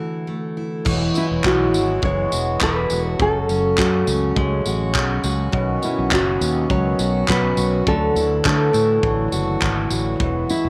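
Tender and reflective, this acoustic pop excerpt moves at 103 BPM in 4/4 with a gentle sixteenth-note swing. It opens on a full-bodied, up-front picked steel-string guitar, and a reedy, breathing harmonium enters at 0.8 seconds. At 0.9 seconds a warm, amped fretless bass and a studio drum kit with punchy kick, crash cymbal, handclaps and tambourine join, and from 1.2 seconds a thumb-plucked classical nylon-string guitar carries the melody over add9 chords that drift from D through E, F# minor and B back to D, set in moderate spring reverb and small room ambience.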